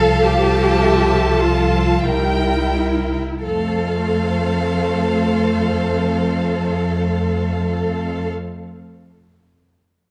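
In a rubato 3/4 that slows through the opening 3.4 seconds, this serene, warm fragment of a slow romantic movement for string orchestra sets a rich, close first violin section singing the melody over a soft-attack second violin line in the background, smooth, even violas, lush, expressive cellos and a focused double bass section up front, every part bowed with vibrato in a dark, wet concert-hall reverb.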